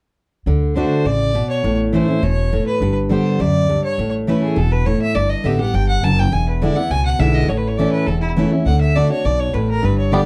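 A picked steel-string acoustic guitar and an upright bass start together at 0.5 s, setting up a driving, lively bluegrass groove at 205 BPM in a straight 4/4 in D major. The jumbo guitar sounds bright and full-bodied, sitting up front with audible finger squeak, while the pizzicato bass gives a woody, dark foundation beneath it. A single bowed fiddle carries the melody from 0.7 s, clear and earthy with a light vibrato and a distant quality. The harmony moves from D through A, G and E7 before returning to D. At 10.1 s a twangy, percussive banjo played with fingerpicks flashes in for a brief arpeggio, just as this cut from a longer piece ends. The dark production places the players in a moderate studio ambience.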